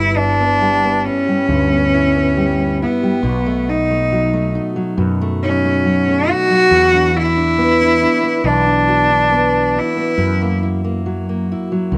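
Reflective and intimate, this acoustic folk-pop ballad moves at a slow 69 BPM in B minor, its harmony passing through G6, B7 and E9sus4 before settling on F#7. A clear, bowed solo cello carries the melody up front with vibrato, an intense tone and a smooth top, a slapback echo trailing it until it falls away at 10.6 seconds. Beneath it, a fingerpicked steel-string guitar with fresh strings and audible finger squeak sits beside a dark, round fretless electric bass, all captured dry in an open outdoor setting in this short cut from a longer piece.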